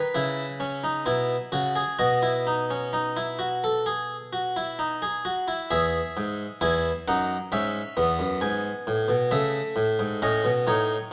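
A solo harpsichord opens this serious, solemn passage, taken from a longer baroque-style fugue in three parts. Its Flemish-style tone is plucked, round and warm, drawn from a single set of strings and placed up front by close, detailed microphones. The piece moves at a stately 66 BPM in straight 4/4 in E major, with the instrument tuned to A4 = 439 Hz and its range spanning E2 to G#5. The harmony starts on C#m and moves to B, then a new section at 5.7 seconds settles on E before turning to A. A reverberant stone room adds a wet tail, giving the pluck a solemn air until the harpsichord stops at 11.0 seconds.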